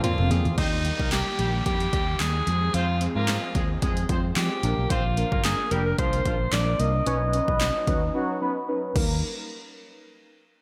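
Light reverb and a digital ambience frame this upbeat, carefree dance-pop excerpt at 111 BPM in Eb major, tuned to A4 = 438 Hz. It opens with a drum fill on a punchy, overdriven analog drum machine that sits up front with kick, snare, handclaps, hi-hat, toms and crash, while an edgy, forceful alto saxophone with vibrato carries the melody through slapback and tape echo. A clear, roomy horn section doubled in octaves joins at 0.6 s, a crystalline wavetable pluck with chorus, a filter sweep and sidechain pumping rides over a dark, round fingered electric bass, a shimmering pulse-width pad sounds only briefly at the start, and an electronic downlifter drifts in the background as the chords move from Bbadd9 through Eb, Fm, Bb and Badd9 before a silent gap from 8.1 s.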